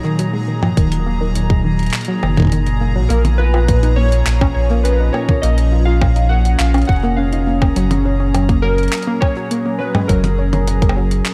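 A deep, round sine sub bass sits up front from 0.8 s, its tube saturation adding body beneath a tight, tape-tinged electronic kick in this eerie, cerebral IDM excerpt at 103 BPM in straight 4/4. Around them, a gritty, pitched-up jungle sampler-style kit of bongos, handclaps, hi-hat and toms runs through a digital delay, sounding compressed and tape-warm. A warbling, nostalgic pad of detuned sawtooth and triangle tones holds sustained chords with chorus, phaser and its own reverb, while a dark, wave-folded pluck plays arpeggios with chorus and delay, its filter sweeping as it evolves. From 3.1 s, mellow lo-fi synth keys carry the melody, mixing square-wave and sub-octave tones with ring modulation, chorus and digital delay. High above, a bright, resonant stepped-filter texture bubbles quietly, and the harmony moves from D#m to A#m to F#add9 within a dark, warm production set in light digital ambience.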